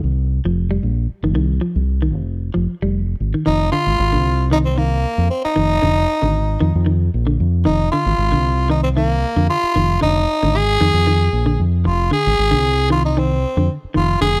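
Dry, close 1970s-style studio sound frames this defiant, driving afrobeat excerpt in F dorian at 114 BPM with a light sixteenth-note swing, where a bright, twangy clean electric guitar picks arpeggios over a round, dark fingered electric bass sitting up front on F7 before the harmony moves to Fm7 at 3.5 seconds and a raspy, growling tenor saxophone takes the solo melody with gritty edge and light vibrato.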